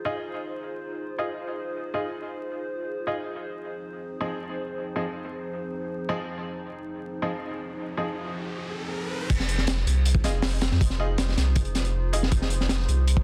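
At 159 BPM in a straight 4/4, a crunchy breakbeat kit with a high-tuned snare and tight kick drops in at 9.3 seconds alongside a thick, tube-saturated sub bass, giving this frenetic, raw drum and bass and jungle excerpt in F minor its drive. From the outset, a warbly, detuned tape-like pad holds nostalgic Fm7 chords with chorus and 12-bit sampler grit, while a bright baby grand piano plays stabs through a low-pass filter and dub echo, and an electronic riser builds from 7.5 seconds. The dense, heavily limited master carries light small-room ambience and vinyl crackle.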